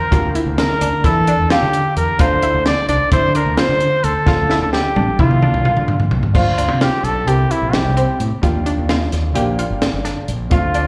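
A jazz-style trumpet with vibrato and scooped notes carries the melody up front, through slapback and tape echo, over a short-sustain grand piano in the background, while a detuned, warbling sawtooth pluck with chorus and phaser, a dark, round overdriven fingered bass and a punchy, high-tuned compact cocktail kit drive this tense progressive instrumental in 9/8 at 260 BPM in D minor, with a drum fill from 4.3 to 6.3 seconds leading into a Dm7, C7, Ebmaj9 and Bb6 passage, all heard as a live club gig through the venue's PA.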